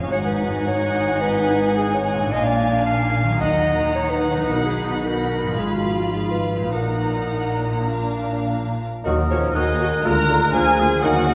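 Lush, bowed string sections open this stormy, dramatic classical passage, with vibrato-rich violins carrying a focused melody over a smooth second violin line, expressive, distant violas, even cellos and woody double basses, while a ringing concert harp plays arpeggios in the background and a present, mellow clarinet adds its own line. The feel is rubato and the whole is bathed in the wet reverb of a concert hall. Near 9.1 seconds a new section brings in an airy, hollow flute high above, a soft-attack oboe and a vibrato-tinged bassoon in the background, along with a very quiet French horn section holding sustained chords, before this excerpt from a longer piece cuts off at 11.3 seconds.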